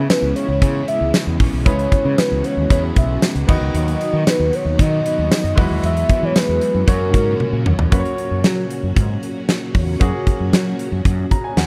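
A straight 4/4 groove at 115 BPM drives this uplifting, romantic slice of 1980s-style pop in F# mixolydian, cut from a longer piece and set in a dry, close 1970s-style studio sound. A big rock drum kit sits up front with a fat snare, punchy kick, hi-hat, crash, toms and tambourine in a bright stone room, while a fretless electric bass, direct and amped, carries the low end from the start. A velvety synth lead with chorus, slapback echo and vibrato sings the melody until about 7.7 seconds, alongside a clear, polished grand piano with deep bass and short sustain. In the background, a lush string machine holds full-bodied sustained chords through its ensemble chorus, and a dark, double-tracked overdriven guitar adds compressed picked support until about 8.4 seconds. The chords move from C#m7 through B and Eadd9 to F#, a drum fill at 7.4 seconds leads into a new section, and a piano fill closes the passage at 11.1 seconds.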